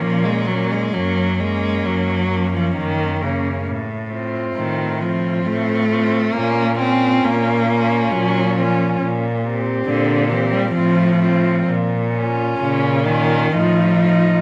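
Bathed in a reverberant recital-hall ambience, this melancholic, yearning classical passage for four bowed cellos, cut from a longer piece, moves in a rubato three-beat lilt, with a focused, vibrato-laden melody set back in the background, a smooth, even second line, an expressive, up-front accompanying cello with soft attacks and portamento, and a rich, smooth, even bass, all over harmony that moves from Bbm through Gb and F/A to a closing F7/A.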